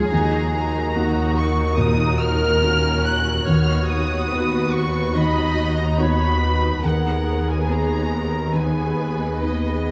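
Tender and uplifting, this cinematic orchestral cue unfolds with a rubato feel, its melody carried by a muted studio violin section with light vibrato and a smooth top, joined by a lush second line from muted symphonic violins. A veiled muted studio viola section and a felt-muted upright piano, intimate with audible action noise, share the accompaniment, while a concert harp rings out thumb-plucked arpeggios in the background. Distant muted studio cellos and a soft-attacked muted chamber double bass section hold the bass on Eb2, and the ensemble sits in moderate scoring stage reverb captured by close, detailed microphones.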